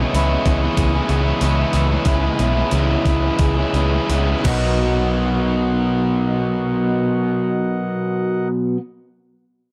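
A gated, sampler-style drum machine sets a straight 4/4 pulse with a thumpy kick, hi-hat and crash cymbal, its overdriven hits re-recorded in a large room, while the tempo slows through the opening before the drums drop out at 4.6 seconds. This hazy, wistful passage of shoegaze and dream pop rock is cut from a longer piece. Two overdriven electric guitars carry the riff: a biting, up-front one soaked in lush chorus, and a hollow-body semi-hollow one set in the background and trailed by reverse reverb. Beneath them a vintage fingered electric bass, foam-muted and round, sits up front with a dark, amped tone. A very quiet twelve-string acoustic guitar picks shimmering, octave-doubled arpeggios with a woody, old-string character, and a chamber organ on its principal stop holds smooth sustained chords with a touch of chiff. The harmony moves from C#m9 to Bmaj7 under a dark, dry, warm production.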